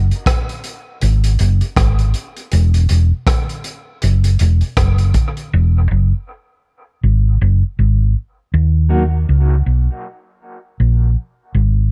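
Hypnotic and meditative, this dub reggae piece, cut from a longer track, moves at an unhurried pace in four with a swung sixteenth-note feel. A hollow-body short-scale electric bass carries the track from the start to the end at 11.9 seconds, its round, amped tone sitting up front and dark. A crunchy breakbeat drum kit of hi-hat, kick drum and rim click plays from the opening until 5.5 seconds, its punchy kick and saturated, gritty grain softened by a rolled-off top, then drops out and leaves the bass alone. At 8.9 seconds a mellow, clean electric guitar sounds a brief, quiet touch, colored by tremolo, a high-pass filter and dub echo. The small room ambience and dark production give the whole a close, warm intimacy as the harmony moves from Ab5 to E and settles on Ebm.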